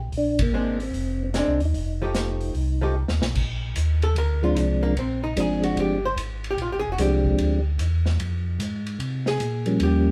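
Bluesy and swinging, this soul jazz organ trio cut from a longer piece moves at 149 BPM in 4/4 with swung eighth notes, centred in Bb mixolydian. A round, dark tonewheel organ carries the bass line through a slow rotary speaker, its key click audible up front, while a second, flute-like organ voice with percussive attack and chorus vibrato plays the melody through the same slow rotary. The acoustic drum kit, with its punchy kick, medium-tuned snare and rolled-off top, sits in a pumping small room, and the band hits an accent at 0.3 seconds as the harmony moves between Bb9 and F9. After a drum fill, a compressed, picked hollow-body archtop guitar steps up front at 3.4 seconds for a clean solo that runs to the end. The whole group sounds like a band playing live together in one room, wrapped in moderate studio reverb.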